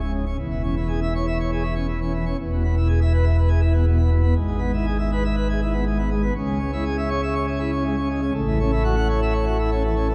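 A solo pipe organ on full plenum, mixtures drawn, dominates this jubilant classical toccata, its brilliant, romantic voicing placed up front and spanning from a deep C#1 to F#5 at the top. The fragment runs from 0.0 to 10.1 s, lifted from a longer piece, and moves in a straight 4/4 feel. Its harmony passes through C#m/E, E, E/G# and C#m before settling on F#m7/A near 8.3 s. A church reverb with a 3.2-second decay surrounds the instrument and gives it a grand, resonant space. The overall production leans dark and warm, tempering the organ's bright, festive sound.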